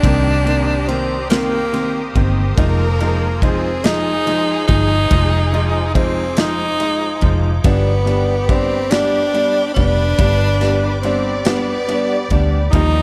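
This is a dramatic, melancholic six-eight pop ballad at a slow 47 BPM in 6/8, tuned to A4 = 438 Hz and cut from a longer piece. A clear, close-miked tenor saxophone carries the melody up front in a jazz style, with soft attacks, gentle vibrato and a dub echo trailing its phrases. A smooth concert grand piano with deep bass accompanies it, also touched by dub echo, while a lush, distant violin section adds a bowed second line in the background. An airy, detuned sawtooth pad with a chorus effect, a slow attack and a filter swell sustains bright chords high above. Underneath, a dark, round, foam-muted fingered electric bass and an acoustic drum kit with a punchy kick, medium-tuned snare and ride cymbal anchor the groove in a pumping room sound. The harmony moves from Cm7 to Fm7 at 2.6 seconds and settles on G at 7.7 seconds, all within a light, echo-heavy studio ambience.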